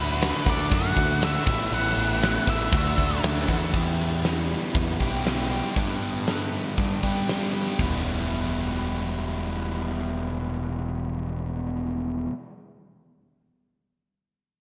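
An arena-sized acoustic drum kit sits up front with a fat snare, punchy kick and bright cymbals, driving this swaggering classic rock excerpt in E minor at 118 BPM from 0.2 to 7.9 seconds. Underneath, a sludgy dark guitar riff, a raw garage guitar with spring reverb and slapback echo tucked in the background, and a growling overdriven picked bass all run through the full 12.3 seconds, moving from D6, Asus2 and Dadd9 to Em and G. A fuzzy octave lead guitar melody and a very quiet, shouting tonewheel organ with slow rotary speaker open the piece before dropping out by 3.7 seconds, all set in a lush hall reverb that gives a big arena sound.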